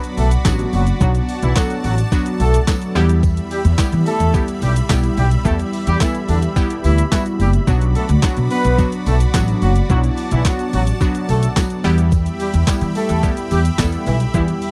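This dance-pop excerpt in E minor moves at 108 BPM in a straight 4/4, driving and energetic from the first beat. An overdriven, crisp 8-bit drum machine sits up front with a thumpy kick, medium-tuned snare, handclaps, hi-hat and shaker. A woody pizzicato upright bass with steel strings anchors the low end just as prominently. A glassy wavetable pluck with a sub octave, detuning and a filter sweep plays the accompaniment, alongside a lush sawtooth-and-square unison pad that holds sustained chords with a slow attack. Both carry chorus and sidechain pumping, and the bass and the horns share the same sidechain pumping. The melody, entering at 0.2 seconds, comes from a punchy horn section with vibrato and octave doubling, distant and roomy and touched with tape echo, while a jingly tambourine sits very quietly underneath as the chords move between Bm and Em in a dry, close, 1970s-style studio sound.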